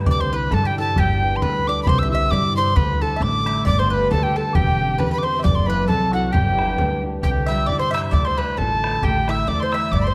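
Close, detailed microphones and a moderate recital-hall reverb frame this lively, cheerful Celtic polka in G major at 134 BPM with a swung 2/4 feel, where an airy, crisp-attacked metal tin whistle with chiff and vibrato carries the melody up front over ringing, thumb-plucked concert harp, a round, double-strung picked mandolin second line, woody pizzicato upright bass and a boomy, distant bodhran, while a dark, biting, nasal bowed fiddle with tape echo joins the background as a second line at 3.6 s.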